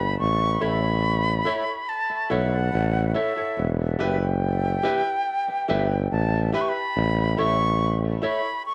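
An uplifting, sunny reggae excerpt at 71 BPM in A mixolydian opens with concert flute and clear tuba together, the flute carrying a pure, expressive melody between E5 and C#6 with vibrato and a soft attack, wrapped in dub echo. The tuba sits up front in the low register, from E1 to B1, its clear tone close-miked with a light vibrato. At 0.6 seconds a dark, clean electric guitar joins in the background with fingered accompaniment, also carrying dub echo, alongside a brilliant, intimate upright piano adding woody stabs with audible action noise and long sustain. The harmony moves from A to Em and back to A over a straight 4/4 pulse. A moderate spring reverb and studio ambience give the echo-heavy mix its glow until the flute closes at 8.7 seconds.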